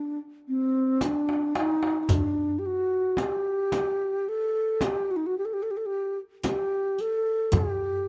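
A straight 10/8 pulse drives this passionate, dry, close-miked Turkish makam ensemble excerpt in a 1970s studio style, where an airy, hollow-toned wooden-headed alto flute sings the melody up front with vibrato and a crisp attack from the opening, joined at 1.0 seconds by a drum fill from a clay-shelled darbuka struck with hard hands in a large room, a deep, compressed and saturated frame drum, and a riq with dark jingles, the three percussion parts playing until 7.8 seconds.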